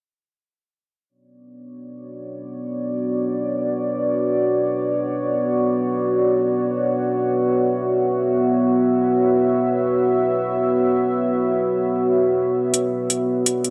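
A deep, dark ambient pad of detuned sawtooth and sub-octave layers, with chorus and its own reverb, holds sustained Bmadd9 chords from 2.1 seconds in this heavy, tense half-time drum and bass fragment in free time and B minor, joined only at 12.7 seconds by an up-front, metallic electronic hi-hat, all set in a lush hall reverb on a dry, gritty cassette-tape recording cut from a longer piece.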